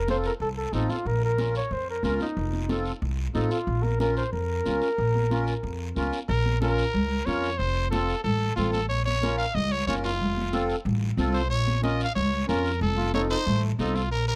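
A warm, close-miked flugelhorn solo opens this fiery, passionate cumbia excerpt over a woody, thumpy upright bass, a reedy accordion, ringing high-tuned congas in the background and a raspy guiro, until a brilliant, gritty, growling trumpet takes the melody at 6.3 seconds and the flugelhorn returns briefly at 13.0 seconds, captured in a dry, close 1970s-style small-room sound.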